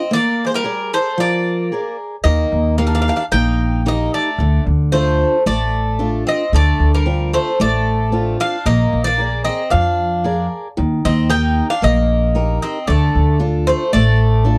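Cool and brooding, this Greek folk excerpt at 113 BPM in D phrygian pairs a bright, metallic, up-front bouzouki melody with a second, quieter bouzouki line underneath, a boxy picked steel-string acoustic guitar accompaniment, and a woody pizzicato upright bass that enters up front at 2.2 seconds, all captured in a dry, close 1970s-style studio sound as the chords cycle through Bb7, Eb and Dm.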